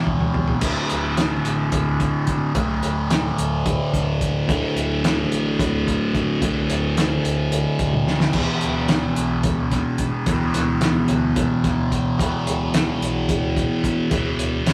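A drum fill and a fuzz guitar riff open this excerpt of hypnotic, kaleidoscopic psychedelic rock, with bass and drums settling in by 0.1 seconds. The music moves in a straight 7/8 at 218 BPM counted in eighths, tuned slightly flat to A4 = 438 Hz, and circles between E5/D and D5 power chords. Up front, the double-tracked, picked fuzz guitar grinds out its riff low in its register, its distortion colored by a phaser. The drum kit is cloth-damped and thuddy, with muffled, dark cymbals, a fat snare and a tight kick, all saturated and gritty with a rolled-off top; a second fill arrives at 7.9 seconds. Beneath them, a round, punchy hollow-body short-scale bass sits in the background, fingered deep in the low register. The whole thing has the rough feel of a small rehearsal room, wrapped in a moderate studio reverb.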